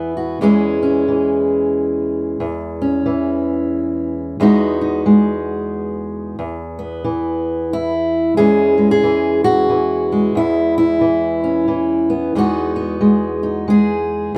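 A fingerpicked steel-string acoustic guitar with fresh strings and an auditorium-sized body plays alone and up front, ranging from E2 to G#4 across this short folk excerpt in E major. At 90 BPM in a swung 3/4, the nostalgic, gentle piece moves through E6, G#m7/E and Bsus4/E, then returns to E6 at 8.4 seconds for a second section. A moderate room ambience surrounds the performance, which sounds as if it were captured live.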